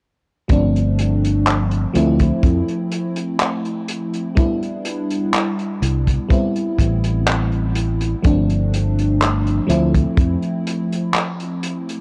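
A lush, detuned FM electric piano with a soft pad layer stands out up front, its dreamy chords carrying a subtle chorus and analog delay from 0.5 to 12.0 seconds. This woozy, nostalgic vaporwave excerpt moves at a slow 62 BPM in a straight 4/4, cycling through G9sus4, Dm9, Cmaj7 and Am9 before returning to G9sus4 and Dm9. A punchy fingered electric bass sits direct and forward in the low register, joined by a tight, rolled-off kick drum in a pumping room until 10.4 seconds. A soul drum kit with handclaps and hi-hat sits further back and carries on to the end. Light reverb and small room ambience surround the parts, and the whole track has the worn, warbling pitch drift of old cassette tape, as though the fragment were lifted from a longer piece.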